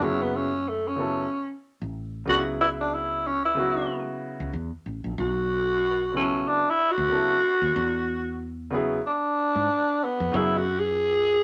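A growling tenor saxophone carries the melody of this mellow, nocturnal jazz-hop excerpt, playing a solo with a breathy, raspy subtone, soft attacks, scooped notes and vibrato. It sits up front in the mix and stays in its middle register across the full 11.4 seconds. An intimate upright piano accompanies it, its woody tone, long sustain and audible action noise giving the track a vintage character before it drops out at 10.6 s. Underneath, a fretless electric bass lays down a dark, round and punchy low end with a direct, amped sound. The groove sits in 4/4 with a light swing on the sixteenths, moving through F#m11, C#m7, B9sus4 and E9 before landing on F#9sus4. A moderate studio reverb lends the small group a close, late-night atmosphere.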